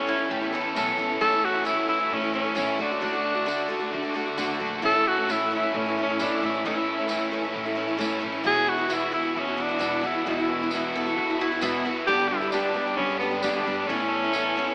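A clear tenor saxophone carries the melody up front, its punchy tone softened by a smooth top and light vibrato in a pop-style solo. This short cut from a longer folk rock and heartland rock piece has a hopeful mood and a straight, steady four-beat pulse. A bright, picked steel-string acoustic guitar and a crunchy, double-tracked overdriven electric guitar riff drive the accompaniment, while a woody, growly upright bass sits darkly in the background. A mellow, flute-like tonewheel organ holds very quiet sustained chords through a rotary speaker, and a jingly tambourine enters at 0.8 s. A bowl-back mandolin adds brief picked second-line flourishes at the opening, around 11.0 s and in the final moments. The rough home demo mix has an AM radio character, bathed in a lush hall reverb.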